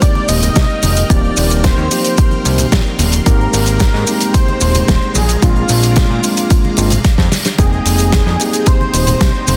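Sensual, groovy nu-disco in F dorian at 111 BPM opens with a punchy, up-front electronic kick, a huge arena drum kit of hi-hat, shaker and snare, very quiet distant congas and tube shaker, a mellow tine electric piano with sampler grit and slapback echo, lush string machine chords pumping in the background, and a thick, nasal, warbling unison lead with analog delay. A fat, saturated analog bass with a filter pluck joins at 0.3 s, and the harmony moves from Fm11 through Eb6, Abmaj9 and Bb7, returning to Fm11 at 7.6 s just after a drum fill that starts at 7.0 s. The dense, heavily limited master sits in a small room ambience.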